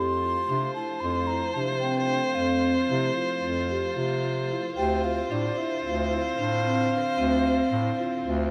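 Closely miked with light reverb and tuned to A4 = 439 Hz, this cut from a longer contemporary chamber piece moves with a hypnotic, urgent pulse in 9/8 at 224 BPM in eighths, its harmony shifting from Fmaj7 to Dm7 at 4.8 seconds. An airy, wooden, slightly unsteady baroque flute with soft attack and vibrato carries the melody, while a bowed viola holds a smooth second line on C5. A round rosewood marimba with soft mallets spins arpeggios, an up-front bass clarinet anchors the bass, and a rich studio string section sustains chords in the background.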